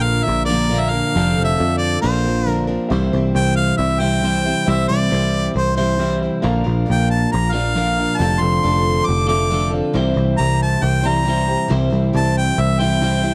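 Rock in C mixolydian at 136 BPM with a hopeful, nostalgic air, this short cut has a bright, up-front harmonica with light vibrato carrying the pop-style melody over a growly, foam-muted picked electric bass and a twangy, compressed electric guitar riff just at the edge of break-up, bathed in spring reverb. A boxy old ladder-braced acoustic guitar picks along in the background. A dark, mellow baby grand piano with long sustain joins at 2.9 s, all within a dry, close 1970s-style studio sound.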